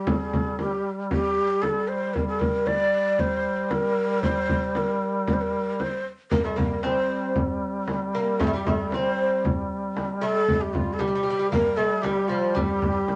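This Arabic maqam ensemble piece, cut from a longer work, has a melancholic, hypnotic mood in a straight 4/4 feel. A breathy, end-blown ney carries the melody up front, close-miked, with vibrato, tongued notes and an unsteady quality. Beneath it, a warm duduk holds a smooth, folk-style drone on G3, while a deep, large frame drum played with soft hands keeps the pulse close and prominent from the start. At 6.3 s a fretless oud enters with a woody, plectrum-plucked second line on double strings, joined by a crisp, metal-shelled darbuka set very quietly in a live room. The whole ensemble sits in a wet studio reverb, with the top end rolled off above 10.3 kHz.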